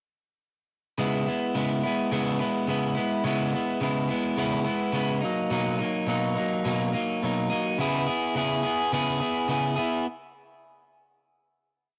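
Indie pop in C# dorian at 106 BPM in a straight 4/4, this short, complete piece has a lonely, hazy mood. A single electric guitar plays alone from 1.0 to 10.1 seconds, picked up front in steady eighth-note strumming with jazz chord shapes. Its tone is warm and slightly broken-up, sitting at the edge of break-up, with a subtle chorus and a warbly pitch drift that lend it a wavering, dreamy quality. The harmony moves from C#m7 to Bmaj7 at 5.2 seconds and returns to C#m7 at 7.8 seconds, with the guitar ranging from B2 to G#4. A light reverb and the soft grain of a home cassette recording give the sound an intimate, faded character.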